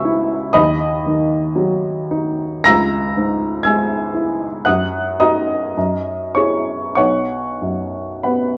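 A woody, slightly detuned upright piano plays alone and up front from 0.0 to 8.6 seconds in this fragment of a romantic classical nocturne, moving with a tender, dreamy rubato and a short sustain across a range from deep bass to high treble. Its harmonies drift through major, minor and rich dominant colours before settling on a chord built on B. A damp stone-room reverb surrounds the instrument, and the sound carries the worn, warbling pitch drift of old cassette tape.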